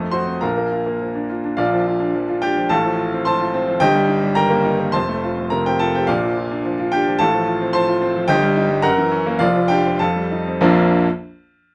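A clear baby grand piano plays alone and sits up front, heard from close, detailed microphones that catch the faint noise of its action and give the sound an intimate, natural presence. The piece is a brilliant, sparkling classical virtuoso study in Bb major, in 2/4 at roughly 95 to 111 BPM, played with a rubato feel. Spanning from F1 up to Eb6, the piano's long sustain rings through a light reverb as the harmony moves from Bb through F/A and Eb/G and back again. A slowing down begins at 7.8 seconds, where colors such as Gb7, Dmadd11/F and F9 lead toward a return to Bb at 10.6 seconds. This short passage is cut from a longer piece and closes just as a new section gets underway.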